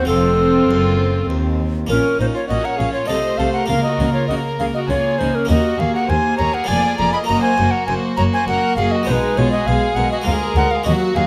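A woody, airy tenor recorder with a breathy chiff sits up front and carries the melody in this stormy, dramatic baroque-style concerto movement in Bb minor, moving at 100 BPM in 3/4 and cut from a longer piece. Behind it, a gut-strung first violin section also carries the melody with light vibrato and a smooth top, while a second violin section adds a mellow second line and a dusky, distant viola section fills in the accompaniment alongside a round, plucked Flemish-style harpsichord. A sonorous cello section and a shadowy double bass section anchor the bass through shifting harmonies, captured with close, detailed microphones and light reverb.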